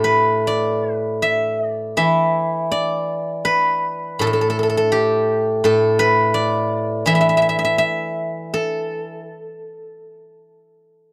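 A steel-string zither carries this short solo excerpt from Chinese traditional music, its ringing, silvery tone sitting up front in the sound. Played with fingerpicks, it spans from A2 up to E5 in the A shang mode, giving the line both a resonant low end and bright upper notes. The mood is flowing and serene, with a rubato feel loosely around 82 BPM in 4/4. The recording has a dry, close 1970s-style studio character, touched by a little studio reverb. Lasting about 11.1 seconds, this fragment cut from a longer piece stays within a single section throughout.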